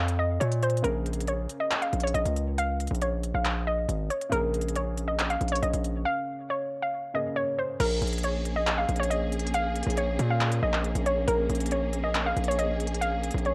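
Dark, hard-hitting trap-style hip hop at 138 BPM in a half-time feel, set in Bb minor with a lo-fi cassette character, where a hollow, bouncy square-wave pluck carries the melody up front over a heavy, aggressive distorted 808 bass and a crisp trap kit of hi-hats, handclaps and crash cymbal. A felt-muted upright piano adds soft, intimate Bbm7 accompaniment from 0.8 seconds through a break that ends at 7.8 seconds. At 7.8 seconds a lush symphonic string section enters with bowed sustained chords full of vibrato and portamento.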